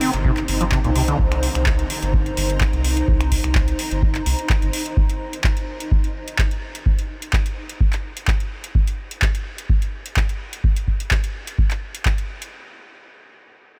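Soaked in a huge, dreamy ambient reverb, this trippy, raw acid house excerpt at 127 BPM in C minor sits on a Cm7 chord, with a deep, dry electronic kick up front and a booming analog drum machine of finger snaps, handclaps and metallic hi-hats, while a squelchy, resonant overdriven saw acid bass riff makes a filter sweep through lush chorus and diffuse delay until 1.2 s, a round, dark analog bass pumps under sidechain until 4.7 s, and a cloudy, blurred granular pad with detuned unison evolves and pumps until 5.0 s.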